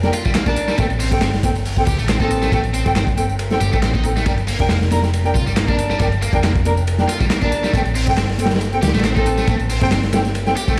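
A swung sixteenth-note breakbeat drives this gritty, swaggering clip, its crunchy kit up front with a punchy kick, dark cymbals and a saturated, rolled-off top, while overdriven electronic tambourine and handclaps and bright, hard-handed congas sit further back. A round, punchy hollow-body bass and a scooped, high-gain, double-tracked guitar riff carry the low and middle ground as the harmony moves between Gm and Am7. Distant, roomy horn stabs coloured by 12-bit sampler grit and tape echo ride on top, and the whole mix sounds as if played through a big sound system in a bare stone room.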